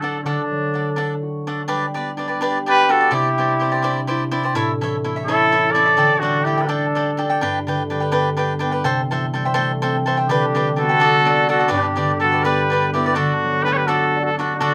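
An excerpt of festive, proud mariachi in 6/8 at 84 BPM and G major opens with a clear, lightly vibrato-tinged trumpet melody sounding distant and roomy yet up front, over crisp picked cavaquinho and ringing thumb-plucked concert harp arpeggios, joined at 2.7 seconds by a mellow second trumpet line, with both horns pausing from 7.2 to 10.3 seconds while the strings carry on in a small, moderately reverberant room.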